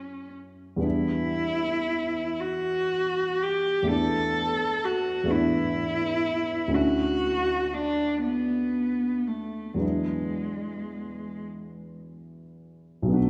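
A bowed cello and a grand piano begin together in this mysterious, wistful impressionist duo, moving in a slow, rubato 6/8 at roughly 34-44 BPM in dotted quarters, tuned to A4 = 441 Hz. The cello carries the melody up front with expressive vibrato and portamento, while the dark, mellow piano accompanies with a vintage, short-sustained tone through harmonies such as F#m7, Dmaj9 and E9. A moderate concert hall reverb surrounds the pair throughout this brief fragment of a longer piece.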